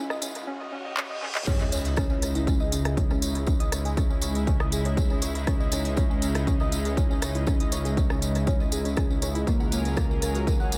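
The sound is dry and echo-heavy, thinned by a high-pass filter, in this driving, melancholic melodic techno excerpt cut from a longer piece. It opens on a brief build-up: a riser, reverse cymbal and sub drop play under a filter sweep on a woody, wave-folded pluck that spins dark, decaying arpeggios through analog chorus and dub echo. A very quiet, richly bowed studio string section adds a close, vibrato-laden texture for only the first half second, while a lush, thick unison pad holds sustained chords with chorus, vintage 12-bit sampler grit and sidechain pumping. A techno drum kit with smooth hats, handclaps, rim clicks and crash, its parts touched by dub echo, runs with a jingly tambourine and closes the build with a fill. At 1.5 s the drop lands with an impact, bringing in a heavy, up-front electronic kick and a deep, rumbling detuned saw bass, saturated by tube warmth and shaped by sidechain pumping. 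The harmony rests on C#madd9 until it shifts to F#/C# at 9.5 s.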